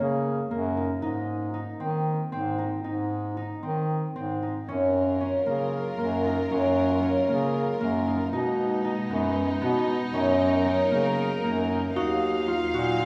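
Contemporary chamber music in 7/8 at 231 BPM counted in eighths, this excerpt from a longer piece in F# major feels hopeful yet restless, its straight, uneven pulse pushing forward. A bright, thumb-plucked concert harp rings out arpeggios up front from the start, alongside a vintage-toned bass clarinet carrying the bass line in a classical style. At 4.7 seconds a dark chamber string section enters with soft-attack, lightly vibrato-laden sustained chords, intimate and close with a smooth top, as the harmony moves from F#maj7 through B6 and F#6. At 12.0 seconds the music shifts to D#madd9 and a vibraphone played with medium hard mallets, motor off, adds a metallic, ringing second line on a single D#4. The whole ensemble sits in a wet recital hall with a 1.5-second reverb, giving the sound the spacious bloom of a church or concert hall.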